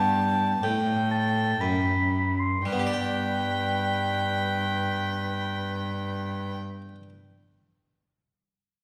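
A vibrato-laden oboe carries the melody, its punchy attack and smooth top singing over the ensemble in a serene, dance-like baroque-style sonata movement in G major. Set in a gentle 3/4 at around 57-63 BPM, the excerpt comes from a longer piece and opens with a slowing of pace through its first 2.7 seconds. A single violin plays a close, up-front second line with an airy bow and a nasal, reedy gut-string tone in period style. Beneath them, one bowed cello supplies a rich, up-front bass. A round, mid-forward harpsichord with one set of strings plucks the Italian-style continuo accompaniment and rings on alone until 7.1 seconds, after the other parts stop at 6.6 seconds. The whole group sits in the lush 1.5-second reverb of a church or concert hall.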